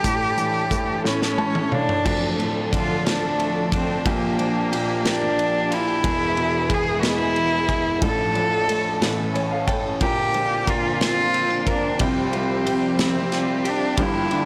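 Melancholic and aching, this six-eight pop ballad in D minor moves at 60 BPM, with a rich, nasal, bowed solo cello carrying the melody up front through tape echo. A woody, vintage upright piano, a lush string section playing sustained chords in the background, and a punchy, mid-forward studio drum kit with a rolled-off top support it, with the drums and piano each adding a fill from 1.0 seconds. A clean, compressed, direct-recorded electric guitar slips in at 2.0 seconds with echoing arpeggios, all within a blown-out, overdriven recording bathed in light studio reverb.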